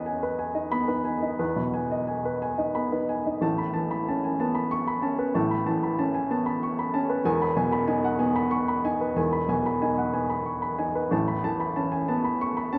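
A woody, polished upright piano sits up front in a cathedral-like reverb that lingers for seconds, playing this peaceful, hopeful neoclassical minimalist fragment alone in a rubato triple metre, its short-sustaining notes reaching from deep bass to bright treble as the harmony moves between Emaj7 and Aadd9, shifting into a new section at 3.4 seconds.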